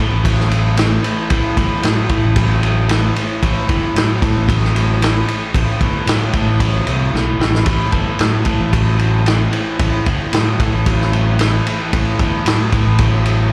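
An overdriven electric guitar riff and a fuzz-drenched, fingered electric bass open this smoky, brooding fragment of blues rock power trio and southern rock, with a vintage drum kit joining at 0.2 seconds in a straight, steady four. The bass sits up front and growls with overdrive, while the picked, double-tracked guitar sounds compressed and a touch softer in the mix, its riff moving in a low register. The acoustic drums lean mid-forward, with a punchy kick, a medium-tuned snare and dark ride cymbals under a rolled-off top. A short drum fill at 7.1 seconds breaks up the groove before the trio carries on. The whole thing comes across as a live gig heard through the venue's PA, wrapped in small-room ambience and club reverb, and it is cut from a longer piece.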